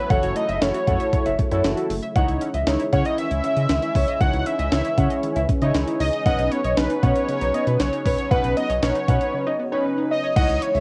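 A fat, nasal analog lead carries the melody from the opening moment, sitting up front over a sweeping resonant pad of slow-attack, warbling chords and a bright analog pluck playing arpeggios in the background, both treated with chorus. Within a fraction of a second, a gritty, compressed breakbeat kit arrives with a thumpy kick, high-tuned snare, hi-hat and crash. Entering at the same moment are a round, deep analog bass, brassy detuned synth brass with vibrato and filter sweep, and a baby grand piano playing a second line in the same range as the lead, with tape echo and plate reverb. This cool, nocturnal synth-pop cut moves at 117 BPM in straight 4/4, cycling through F#m7, C#madd9 and Badd9. The lead, pad, pluck, brass, piano and drums carry a cassette tape coloring, and the mix sits in a moderate studio reverb with a home-recorded character. A break arrives at 9.3 seconds, and the pluck drops out at 10.3 seconds, shortly before the clip ends.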